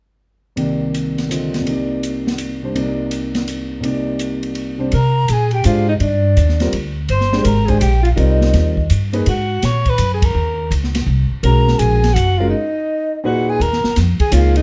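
A swung jazz waltz with a searching, hypnotic modal pull opens on an up-front concert grand piano over Cm9 and a small-room drum kit with dark cymbals and a boomy kick, before a woody, pizzicato upright bass, a clear alto saxophone with scooped notes and soft attack, and a pure, hollow, close-miked silver flute carrying the melody join near 4.9 seconds, moving to Abm9 and through a band break at 12.5 seconds in this fragment of a longer piece.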